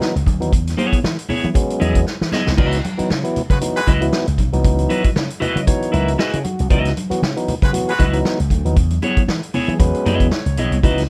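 This funk groove has a sly, hypnotic pull, its sixteenths lightly swung, and it is cut from a longer piece. A vintage drum kit sits up front with a punchy kick, medium-tuned snare and dark cymbals, its rolled-off top giving it a mellow, natural studio-room sound, while bright, thin-skinned congas tick along in the background. A growly slap bass pushed through an envelope filter enters at 0.2 seconds, and a clean, picked electric guitar with a dark tone and harmonic tremolo joins at 0.8 seconds to comp alongside tonewheel organ stabs heard through a stopped rotary speaker. After a drum fill leads into the second section at 2.6 seconds, a tight horn section with pop-style vibrato adds two brief second-line phrases, and the clear-toned organ adds a pair of fills. The harmony rocks between C#m11 and E6 under light reverb.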